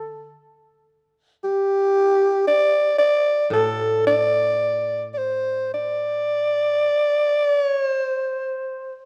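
Calm and austere, this short cut from a longer piece of Japanese chamber music drifts in a slow, rubato 4/4 at around 49-57 BPM, with a growling, jazz-style alto saxophone carrying the melody up front, its raspy, gritty tone and scooped notes softened by a smooth top and light vibrato, while a dry, woody koto plucked with fingerpicks supplies low accompaniment until 6.8 s, leaving the saxophone alone in a light reverb through to 9.1 s.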